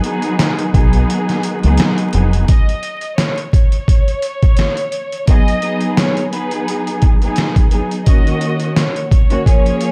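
Dark and tough, this boom-bap hip-hop excerpt moves at 86 BPM in 4/4 with a swung sixteenth feel, set in G# dorian over a dark production with vinyl crackle. A gritty, pitched-down sampler-style drum kit sits up front throughout, its thumpy kick and medium-tuned snare compressed and re-recorded in a small room, with hi-hat on top; the opening is a break, and the kick drops out from 1.1 to 2.5 seconds. Under a G#m7 chord, a lush studio string section with cassette-tape coloring plays accompaniment from the start, alongside a bright, shouting tonewheel organ in the background, lightly overdriven through a fast rotary speaker, until 2.5 seconds. A deep, round dub bass, fingered and punchy, appears from 0.7 to 2.4 seconds. At 2.5 seconds a clear, intense violin section takes the melody with vibrato, moving through a chordless stretch before returning to G#m7 and closing on F#6.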